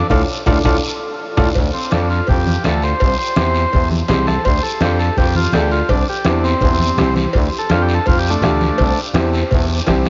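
Cumbia in D minor at 166 BPM, passionate and driving, this short cut from a longer piece opens with a band accent and a drum fill before a buzzy, vintage combo organ takes a solo from 1.6 seconds, riding over a Dm and C vamp. An up-front, growling FM bass and a bright, woody upright piano carry the harmony, while a soft-beaten bombo, background congas with thick skins, a distant raspy guiro, and ringing metal-shell timbales with cowbell keep the groove moving. The dreamy mix is soaked in huge ambient reverb and has a dark top end.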